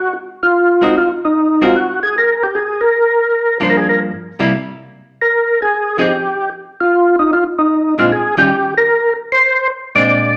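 Soulful and greasy, this swinging jazz excerpt moves at 151 BPM in 4/4, with an overdriven tonewheel organ carrying the melody from the start, its gritty, percussive tone colored by a slow rotary speaker and chorus vibrato. A clean, hollow-bodied archtop guitar joins at 0.8 seconds with picked accompaniment, and both parts sit up front in a wet, large studio reverb. The harmony moves through chords like Ab9, Gm7, Fm7 and Bb9, punctuated by brief passages where the chords drop out.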